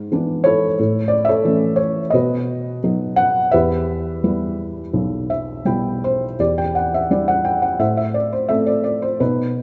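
A felt-muted upright piano opens alone on an E7/G# chord, its tone soft, dark and intimate with thick felt and short sustain, sitting up front in a reverberant concert hall with a 2.1-second decay. This brooding, bittersweet classical solo in E minor moves at about 85 BPM in 4/4 with a loose, rubato feel, passing through A, B and Em before a felt piano fill at 4.9 seconds. At 6.4 seconds a new section turns to Em7 and Am, and the passage ends at 9.6 seconds as a fragment cut from a longer piece.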